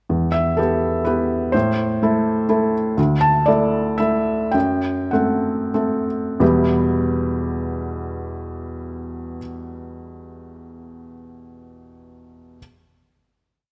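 In a rubato 3/4 that drifts between 89 and 128 BPM and slows from 2.3 to 6.4 seconds, this short, melancholic neoclassical minimalist piece in E minor sits on a solo felt-muted upright piano. The close, intimate instrument is soft and mellow, with thin felt and audible action noise, carrying a single-line melody over bass and chords on the beats as the harmony moves through Em, Am, Dsus2 and F#dim. It settles onto a final Em chord at 6.4 seconds, which rings in a moderate scoring-stage reverb until the piano stops at 12.6 seconds.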